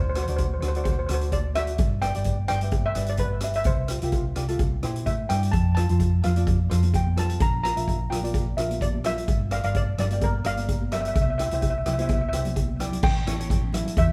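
A bright, shimmering steel pan carries the melody over a dark, round hollow-body electric bass from the first moment, setting up a bouncy, carefree calypso at 128 BPM with a light swing, soon joined by a mellow, fingerpicked ukulele and an up-front street-band drum kit with a boomy kick, dark cymbals, hi-hat and rim clicks. High-tuned, ringing congas played with hard hands enter in the background at 6.2 seconds. The steel pan carries a digital delay, and the whole band sounds live in a moderate stone room, moving through chords such as D7, G6, F and Gm7 before a drum fill at 12.7 seconds leads into a closing A7 passage in this excerpt from a longer piece.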